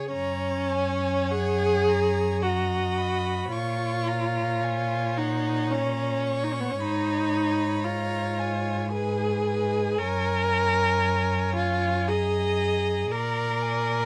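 Captured with close, detailed microphones and a light touch of reverb, this serene, slow romantic movement for string quartet in F# major drifts in a rubato 3/4 at 48-60 BPM, cut from a longer piece. The up-front viola carries a clear, smooth accompaniment and the cello lays down an even, rich bass, while the second violin sings an expressive line with portamento from a distance. High above, the melody violin sits in the background with vibrato, and all four bowed parts play through to 14.1 s, closing on an A#7 chord.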